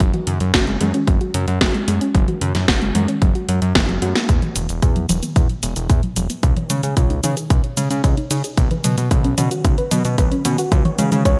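A bright 1980s-style digital production with moderate plate reverb frames this melodramatic, nostalgic italo disco fragment at 112 BPM in straight 4/4, where a soft, round, dark pluck plays filter-swept arpeggios through analog chorus and delay over a fat, detuned, saturated sawtooth bass, a punchy up-front electronic kick, and a tape-warm house kit of cabasa, hi-hat, toms and cracking snare treated with gated reverb, with a drum fill at 3.8 s leading the move from F#5 to E5, then on through C#5 and Bsus2.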